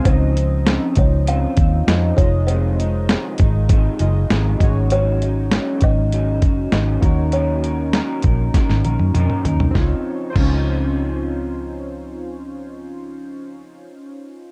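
A straight 4/4 groove from a gritty, overdriven sampler-style drum kit with a thumpy kick, kept up front with a dark, round, foam-muted electric bass, drives this dreamy, sunny indie bedroom-pop snippet, where a slightly broken-up lo-fi guitar wobbles with analog chorus and warbly pitch drift, sawtooth analog keys bloom through a filter sweep with chorus and phaser, and a woody, hollow-toned kalimba carries a mellow, ringing melody until 9.1 s, just after a drum fill starting at 8.5 s, all over a Dbmaj9, Fm7, Ab7sus4 and Ebm7 progression with cassette-tape grit and light reverb.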